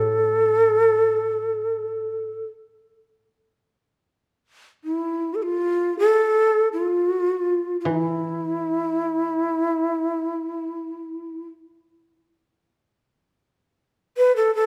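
A moderate recital-hall reverb surrounds this austere, meditative passage of Japanese chamber music, cut from a longer piece. Up front, a breathy, hollow shakuhachi carries the melody with vibrato, tongued notes and chiff, returning for a brief final phrase at 14.2 seconds. Beneath it, a mellow, woody koto, plucked with fingerpicks and kept dry and low in the mix, plays accompaniment until 2.4 seconds and again from 7.9 seconds.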